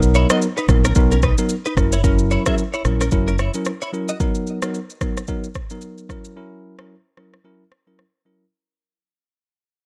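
A bell-like tine electric piano sits up front in this breezy, joyful afrobeats excerpt, its clean, direct tone carrying the accompaniment across the whole clip as the harmony moves between Bmaj7 and F#7. Beneath it, a deep dub fingered electric bass gives a dark, round, punchy low end, and a produced afro-pop drum kit with a deep kick, rim click and shaker drives a swung sixteenth-note feel. A direct-recorded clean electric guitar adds a twangy, picked, compressed riff, colored by ensemble chorus and delay. The bass drops away at 3.5 seconds and the guitar at 4.2 seconds, leaving the electric piano and drums to carry the rest. A digital ambience surrounds the mix, and the whole passage fades out over its full length of about 8.5 seconds.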